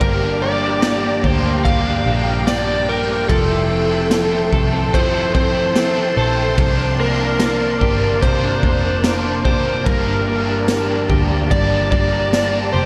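Haunting and ethereal, this 73 BPM dream pop excerpt in G dorian drifts over Gm7 and Fmaj7 as a dark, overdriven slide guitar sings the melody through slapback echo and delay, above a bright double-tracked overdriven guitar with harmonic tremolo and lush chorus, silky string-machine chords, chorused clean guitar arpeggios, round foam-muted picked bass and a gritty, saturated garage drum kit of kick, snare, ride and tambourine that stops at 12.5 seconds, all set in a concert hall reverb with a big arena sound.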